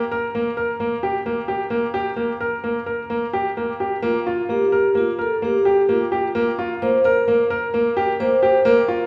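A bright grand piano opens alone with arpeggios in a middle register, its tone brilliant and open, with short sustain and placed up front. This contemporary chamber piece moves in an uneven 5/4 metre with a straight feel, and its mood is hypnotic and pensive. At 4.0 seconds a vibraphone played with soft mallets and the motor off enters as a second line, slightly higher, its metallic, ringing sound mellow and warm beside the brighter piano. The harmony shifts from G minor to a Bb power chord as the vibraphone arrives. A generous recital hall reverb wraps the pair in the resonance of a church or concert hall, and the fragment, cut from a longer piece, ends at 9.1 seconds.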